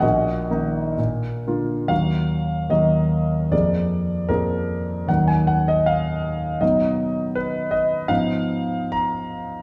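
A romantic classical character piece for solo piano, stormy and passionate, moving in a flexible rubato 2/4 and cut from a longer work. The warm concert grand sounds intimate and natural, with deep bass, audible action noise and a close, up-front presence, reaching from Bb1 to Bb5 inside a large, wet studio reverb that places the listener further back in the room. A short opening section gives way at 1.9 seconds to a longer second section that runs through restless minor-key harmony until the piano stops at 9.6 seconds.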